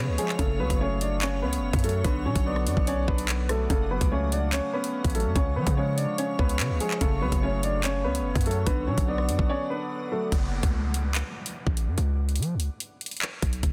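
A punchy, heavy 808-style bass sits up front in this dark, ominous drill piece, its sine tone carrying a noise layer with a fast attack and a decaying tail. The electronic drum kit shares the foreground from 0.2 seconds, with a knocking kick, metallic hi-hats, handclaps and rim clicks in a half-time feel. Above them, a woody upright piano carries the melody while a worn baby grand supplies accompaniment, both heard through a low-pass filter with long sustain. A cloudy granular pad holds blurred, evolving chords high in the register, softened by its own reverb. After a break at 9.5 seconds, the pianos and pad stop at 10.3 seconds, leaving bass, drums and an electronic downlifter in a dense, heavily limited modern master.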